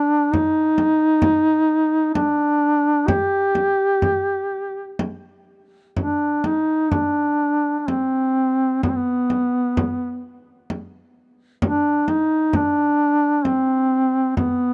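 A dry, close 1970s-style studio sound with small-room ambience frames this mournful, longing Caucasian folk lament, cut from a longer piece and moving in a rubato 3/4 at around 64 BPM with uneven beats, tuned to A4 = 441 Hz. Up front, a mellow solo duduk carries the melody between B3 and G4 with vibrato, soft attacks and scooped notes in a folk style. A warm, acoustic frame drum struck with hard hands sits just as close and joins at 0.3 seconds, and the music shifts into a second section at 6.0 seconds.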